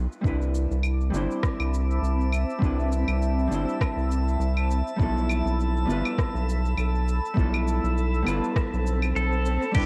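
A relaxed 101 BPM groove in 4/4, with a gentle 16th-note swing, sets up this blissful sunset chillout excerpt: a soft, tape-warmed electronic kick sits up front beside a produced R&B kit of claves, crash, metallic hi-hats, rim click and shaker, both given studio reverb and cassette character. Underneath, a round, deep analog bass with a fast filter pluck holds down the low end, dark and prominent. A clean, picked hollow-body jazz guitar adds dark accompaniment through a low-pass filter and analog delay, while a shimmering, ethereal pad with octave-up sparkle, chorus, phaser and granular motion sustains the chords. High above drifts a calm, glassy harmonics texture with drifting overtones. The harmony moves from Cmaj9 to G13 at 5.0 seconds, an electronic swell rises at 8.8 seconds, and at 9.2 seconds a bright, compressed pedal steel guitar enters up front with slide and volume swells, all framed by the lo-fi intimacy of a home cassette recording.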